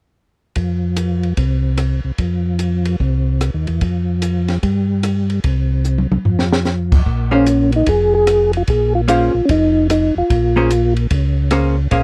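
Soul jazz organ trio in a soulful, smoky mood, cut from a longer piece, with a swung feel and a dry, close 1970s-style studio sound carrying tape saturation. A smooth tonewheel organ bass with chorus vibrato and slow rotary speaker plays from 0.6 seconds alongside a compact cocktail drum kit, dark and rolled-off with a high-tuned snare and punchy kick, which plays a fill around 5.8 seconds. At 7.3 seconds a soft, flute-like percussive tonewheel organ takes the melody over a hollow-body archtop guitar, picked clean and compressed, as the harmony settles on Bbm9.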